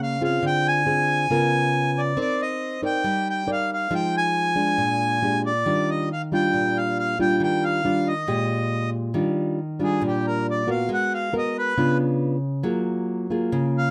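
Bossa nova in a relaxed, romantic mood, with a reedy, mid-forward accordion carrying the melody up front over a classical nylon-string guitar whose thumb-plucked accompaniment and finger squeak sit close in a moderate small room, before the accordion steps into a solo at 9.1 seconds as the harmony moves through Ebmaj9, Abm9, Db7b9 and Gbmaj9.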